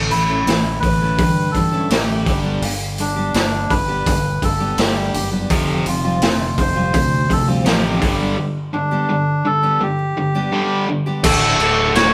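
The recording has the close, roomy sound of a band playing live together, and this restless, anthemic stretch of quiet-loud alternative rock is cut from a longer piece. A reedy, breathy melodica carries the melody up front over a gritty, boomy garage drum kit, while a cranked stack guitar with spring reverb churns out a riff in the background, a growling fingered bass rumbles beneath, and a picked steel-string acoustic guitar adds bright arpeggios. At 5.5 seconds a second overdriven electric guitar joins with its own riff as the chords move from A through G and Fsus2, landing on D at 11.2 seconds.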